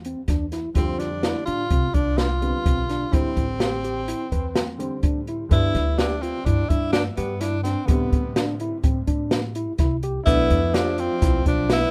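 Moving in a straight 5/4, this tense, intricate progressive instrumental fragment of a rough, dry home demo sets an up-front jazz kit with a boomy kick and a woody pizzicato upright bass beneath bright tine electric piano arpeggios and a clear grand piano in the background, while a present tenor saxophone carries the melody with scooped notes, light vibrato and tape echo, joined at 10.3 s by a breathy alto saxophone second line and a faint, grainy tube shaker.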